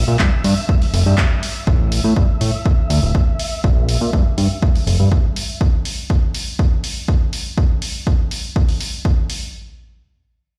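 A dark, bowed violin section holds sustained chords in the background of this sensual, nostalgic filtered disco house excerpt, over a fat, saturated analog bass up front, both pumping with sidechain and muffled by a low-pass filter. A punchy electronic kick enters at 0.2 seconds alongside an analog drum machine's handclaps and hi-hats, whose hats also pump; the bass falls out at 5.1 seconds and the strings at 5.6, leaving the drums alone. The sound is dry yet framed by a large studio reverb, as if played on a big sound system in a bare room.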